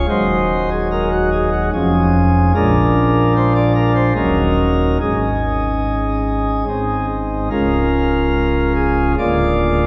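Reverent and serene, this short excerpt from a longer classical chorale-style piece unfolds in Db major at 73 BPM in 3/4, with a freely breathing rubato feel. A solo pipe organ voiced on light, sparkling flute stops plays for the full 9.9 seconds, its romantic voicing spanning deep pedal tones up to the treble and sitting up front in the sound. The listener seems placed further back in the church, where a long, wet reverb of about 3.0 seconds lets each chord, moving from Ebm7 through Absus4 to Db, bloom and linger.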